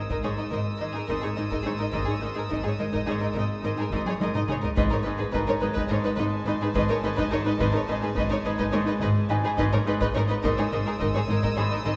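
A reverberant scoring-stage sound frames this eerie, ominous suspense cue in G# minor at 106 BPM in 5/4, where a bright, ringing fingerpicked Celtic harp riff plays over heavy-stick taiko drums with a fill at 4.1 seconds, a mellow background baby grand piano, two violin sections playing a high floating texture and a supporting second line, a close studio violin section carrying the intimate sul tasto melody with light vibrato, a woody viola section, a rich cello section and a distant double bass section, the strings all bowed over a suspended D#sus4/G# chord.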